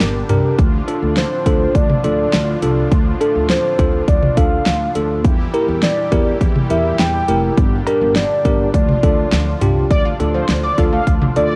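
A punchy, up-front electronic pop drum kit drives this straight four-beat synth-pop fragment, its fat snare, bright hats, cowbell and toms setting a nocturnal yet driving mood. Beneath it a woody, dark upright bass is played pizzicato, while a brassy, detuned analog pad holds sustained chords through a Gm, Dm and Edim progression. A soft, octave-layered synth lead carries the melody until 9.6 seconds, its round, warbling vintage tone thickened by chorus and vibrato, and a bell-like tine electric piano, entering at 0.3 seconds, adds clean accompaniment as if heard through built-in speakers. At 9.9 seconds a new section brings in a mellow, detuned synth brass second line and a quiet analog pluck playing arpeggios in the background, both colored by chorus and tape echo. The whole piece carries the hazy character of a home cassette recording with light reverb, and it is cut from a longer piece.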